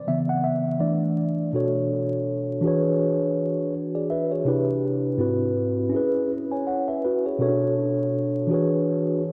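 Swung sixteenths at 82 BPM in 4/4 set a cool, nocturnal hip hop groove in B dorian for this short cut from a longer piece. A mellow tine electric piano plays alone throughout, clean and up front as if through built-in speakers, with analog delay. It moves from C#m7 and E7sus4 into a second passage at 1.5 s that runs through Bm9, E13, Cmaj9 and G#7alt. The dreamy mix is soaked in a lush hall reverb and dusted with vinyl crackle.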